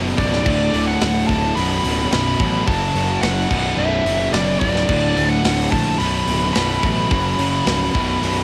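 A light-reverb home cassette recording carries this short, aggressive hard rock clip cut from a longer piece. Two high-gain distorted guitars and a dark, double-tracked, compressed overdriven electric guitar sit in the background on a heavy riff, while a punchy fuzz bass stands up front beneath them. From 0.2 seconds a biting lead guitar carries the melody high above, and a tight metal drum kit with bright cymbals, a medium-tuned snare and a tight kick drives the music over chords moving through Bm and F#m.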